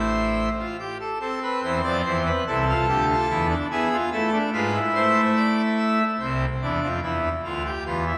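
A full pipe organ sounds from the very first moment, its mixtures giving a brilliant, majestic edge to this short baroque-style classical fugue in three parts. The mood is contemplative and solemn, moving in a slow, straight 6/8 at 48 beats per minute counted in dotted quarters, in A minor with the organ tuned to A4 = 439 Hz. Playing solo and placed up front, the organ spans from a deep A1 up to E5 with a romantic voicing. The harmony moves from A minor through A minor over C and an E7 back to A minor, and the opening material returns at 6.2 seconds over C add 9 before settling on D minor. A generous, wet scoring stage reverb, ringing for about 1.9 seconds, surrounds the organ with a spacious ambience. This brief passage is cut from a longer piece and ends at 8.2 seconds.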